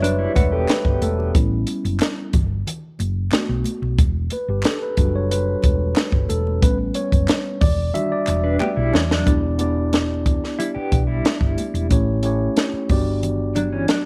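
Over a straight 4/4 groove at 91 BPM, a dry compact cocktail drum kit with a punchy kick and a high-tuned snare anchors this smooth, bittersweet slice of lush 1970s-style soul in E dorian, where a mellow, up-front tine electric piano takes a solo until 9.3 s above a dark, round hollow-body short-scale fingered electric bass, a clean, compressed electric guitar riff with tremolo returns at 8.4 s as a drum fill leads into the next section, and very quiet, bright congas and close, hollow group handclaps that stop at 8.8 s add color in a small room with light reverb.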